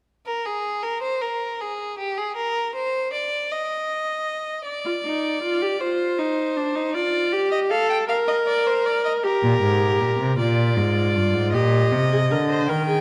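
A smooth, vibrato-rich violin opens this joyful, lively baroque-style fugue for string quartet at 0.3 seconds, joined by a warm, bowed viola at 4.8 seconds and a focused cello bass at 9.4 seconds, each single player sitting up front in a moderate concert-hall reverb, in a passage cut from a longer piece.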